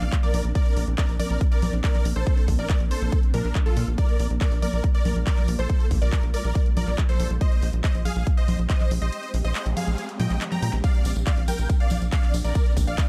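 A soaring, uplifting trance excerpt in Bb major at 140 BPM opens with huge, bright, detuned supersaw chords carrying the melody, a round analog pluck as a second line, and a shimmering, ethereal pad in the background, all pumping with sidechain over a tight, driving sequencer bass that sits up front. A punchy, overdriven electronic kick and a big-room dance kit with a huge snare, handclaps, congas, hi-hat and ride drive the groove through chords moving from Bbadd9 to Gm7/Bb and Abmaj7/Bb. A break at 9.1 seconds brings a faint noise sweep and a drum fill, and a jingly acoustic tambourine enters at 10.8 seconds as the Bbadd9 returns, all within a dark, dry production.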